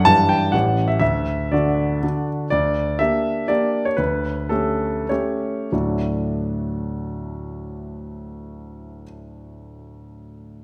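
A single grand piano sits up front in a recital hall whose generous reverb lets each tone ring with a long sustain, while the audible noise of the instrument's action keeps the sound close and intimate. This short cut from a longer classical piece is a graceful, rustic romantic dance in 3/4 and D major, built on dotted rhythms and played with free rubato at a tempo that moves between 89 and 130 BPM. The solo piano spans from A1 to A5 with a clear, polished touch. The harmony passes through Em7/G and A7 before settling on D, then darkens to Gm/D over a D bass, moving through A7/D. The pace eases from 1.8 seconds to 5.7 seconds, where the music arrives back home on D for a final short phrase that runs to 9.4 seconds.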